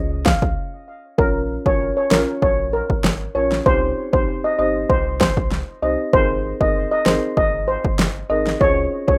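A deep, thick saturated sub bass opens this bouncy, hypnotic dancehall excerpt at 97 BPM in Bb dorian, joined at 0.3 s by a shimmering steel pan lead with plate reverb and a punchy, overdriven deep house kit of kick and fat snare, both up front; after a brief break, a woody marimba with plate reverb enters at 1.2 s as the chords move from Bbm through Cm and Abadd9 to Dbmaj7, within a moderate studio reverb and a rough home-demo mix.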